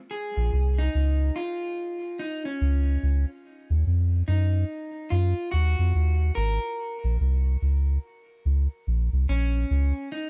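A deep, round sub bass sits up front in this serious, meditative roots reggae excerpt in Bb minor, moving at a slow 72 BPM with a swung 16th-note feel. A dark, slightly broken-up electric guitar carries a picked solo line through tape echo from 0.1 to 10.3 seconds, over harmony that moves from Bb minor to Eb minor at 3.4 seconds and back to Bb minor at 6.8 seconds. The dry, close sound recalls a 1970s studio.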